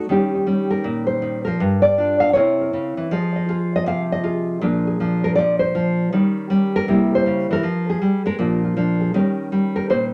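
Relaxed and warm, this brief solo jazz passage swings gently as a lone nylon-string guitar, placed up front, carries the whole excerpt from 0.0 to 10.1 s, cycling through dominant and minor seventh chords that keep returning to Eb7. The thumb-plucked tone is dark and full-bodied, with a deep classical character and audible finger squeaks. A moderate studio reverb adds a touch of room around this fragment cut from a longer performance.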